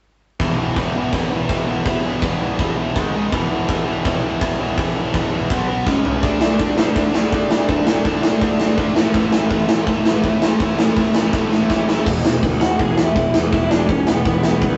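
Punk rock at 165 BPM in a straight 4/4, energetic and rowdy, cut from a longer piece in E mixolydian. From 0.4 s, two overdriven guitars drive the riff over power chords: a bright, up-front distorted guitar and a warmer, crunchy one sitting in the background with spring reverb. A big, natural acoustic drum kit sits up front with bright cymbals, a medium-tuned snare and a punchy kick, roughened by vintage 12-bit sampler grit, and fills rattle through near 6 s and again leading into the next section. At 12.1 s the distorted guitar drops out as a growly, fuzz-laden picked bass arrives, and a lo-fi lead guitar through a small cranked amp joins at 12.6 s with a melody ranging from B3 to G#5. The whole thing has the rough feel of a rehearsal room, with moderate reverb, vinyl crackle, faint mains hum and a dull top end.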